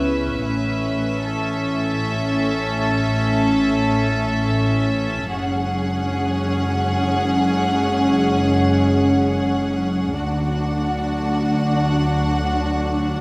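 Cinematic and uneasy, this tense fragment of a longer piece unfolds in free time. Intimate, sul tasto violins carry the melody with light vibrato over a floating, soft-attack second violin line and pure violas. Dark French horns sustain chords in the background alongside bowed cellos, while rich, smooth-topped double basses anchor the bass. The harmony moves from A to F#sus2 at 5.3 seconds and D at 10.2 seconds, all within a moderate scoring-stage reverb.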